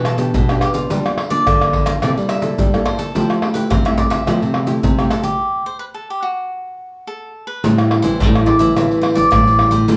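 A straight 4/4 samba and choro groove at 107 BPM drives this sunny, lively excerpt, with maracas, pandeiro, tamborim and a deep surdo played up front with hard hands in a vintage, band-limited sound. A crisp, picked cavaquinho carries the melody over a small, fingerpicked nylon-string guitar accompaniment with fresh strings and audible finger squeak, while a second nylon-string guitar on old strings lays down a woody bass line. Playing live in one room with moderate large-studio reverb, the band hits a stop from 5.4 to 7.6 seconds before moving into a new section on Am7.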